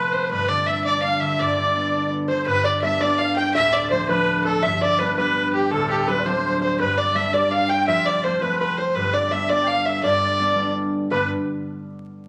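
A rollicking 6/8 jig at 111 BPM, counted in dotted quarters, sets a cheerful Celtic folk pace in G mixolydian for this short cut from a longer piece. A rich, nasal fiddle sits close and up front with an airy bow and earthy edge, carrying the melody from the start until 11.3 seconds. Alongside it a reedy musette accordion plays a second line in the same register, its wet tuning giving a shimmering quality. Beneath them a ringing concert harp, fingerpicked and also up front, supplies the accompaniment down into the low bass through 11.7 seconds. At 2.3 seconds an open-back banjo joins in the background with a mellow, plunky, percussive twang on another second line, while the harmony moves among G, Dm, D7 and F under a large studio reverb and a layer of vinyl crackle.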